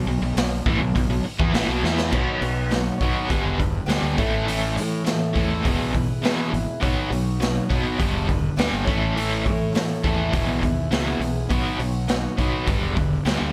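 A gritty, saturated drum kit sits up front in this swaggering, driving classic rock excerpt, with a punchy kick, medium-tuned snare, dark cymbals and a pumping small-room sound whose top end is rolled off. The kit comes in at 0.4 seconds and throws in a fill at 1.8 seconds. Two picked electric guitars carry the riff from the start: one bright and distorted in the background, the other raw and overdriven with tremolo. Beneath them a growly fuzz bass, fingered and overdriven, rumbles in the low end. At 2.1 seconds a shimmering, octave-doubled twelve-string acoustic guitar joins in the background, its fresh strings and finger squeak catching the ear as the chords cycle through Badd9, G, A and E. Light reverb and small-room ambience give the straight-feel groove a close, garage-like presence.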